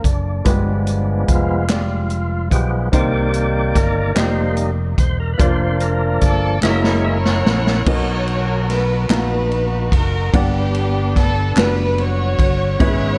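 In a slow 6/8 at 49 BPM, this soulful, jubilant gospel passage opens on a thick, lightly overdriven tonewheel organ solo with key click and fast rotary speaker over short-sustain baby grand piano, punchy, up-front fingered electric bass and a distant, roomy big-band drum kit, as crisp, close handclaps join at 1.7 s, a smooth, bowed chamber string section takes the melody from 6.2 s, and a drum fill carries the music into a new section at 7.9 s, all in a dark, warm production with light studio reverb.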